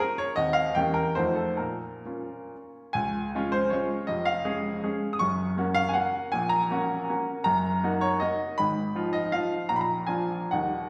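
A wet recital-hall reverb, about 1.5 seconds long, surrounds this short classical excerpt, recorded in a church or concert hall. A solo baby grand piano sits up front with a brilliant, natural tone, spanning Db1 to Eb6. The music is a romantic triple-time dance in 3/4 with dotted rhythms, its rubato tempo moving between 123 and 173 BPM, and its mood is capricious and nostalgic. It opens on diminished and dominant harmonies that arrive at Bb minor, before a new passage at 2.9 seconds settles into Db major. At 7.5 seconds the harmony turns toward Eb minor, and the piece reaches a Bb chord at 9.7 seconds.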